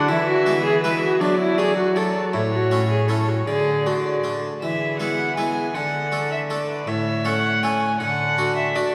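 A dark, nasal solo violin carries the melody of this festive, courtly renaissance-style consort dance, its gut strings and period bowing giving it a reedy edge that sits at a slight distance. Beneath it, a single viola plays the second line with light vibrato and a warm, period-style voice. A rich gut-string cello holds the bass with gentle vibrato, and a round, Italian-style harpsichord with one set of plucked strings fills in the accompaniment. Moving in a straight 3/4 at 159 BPM, the quartet plays together throughout this brief passage cut from a longer piece. The harmony cycles through E, D/F#, A and D before a second section begins at 4.6 s and moves through E, D, A and D until 8.9 s. A lush church reverb with a long 3.6-second decay surrounds the ensemble, giving it the resonant air of a church or concert hall.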